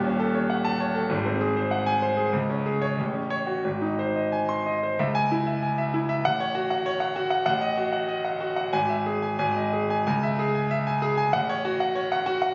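Captured on a phone in a recital hall with a moderate reverb and a dulled top end, this stormy, passionate fragment of a classical virtuoso piano study in C# minor moves in a rubato 2/4 at 87-100 BPM. A clear, up-front concert grand plays alone throughout, its deep bass reaching from D#1 up to B#5 as the harmony drives from D#m7b5 and G#7 toward C#5. At 5.0 seconds a new passage settles on C#m, then moves through D#dim/A and E/G# before returning to C#m and F#m/A.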